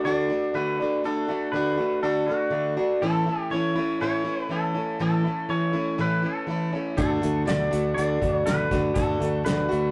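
A straight 4/4 pulse at 121 BPM carries this hopeful, nostalgic fragment of folk rock and heartland rock in D major, tuned to A4 = 444 Hz, drawn from a longer piece. The harmony moves from D to A at 3.0 s and back to D at 7.0 s. Up front, a plugged-in steel-string acoustic guitar plays boxy, picked accompaniment with audible finger squeak. Beside it sits a pedal steel guitar, bright and clean under fingerpicks, carrying the melody with slide and volume swells. An electric guitar through a small old amp adds a dark, slightly broken-up, lo-fi riff. At 7.0 s a fingered electric bass holds a low D, and an acoustic drum kit joins on hi-hat, a tight kick and a medium-tuned snare played with bundle sticks, all set in moderate booth ambience with a rough rehearsal-room character and tube saturation.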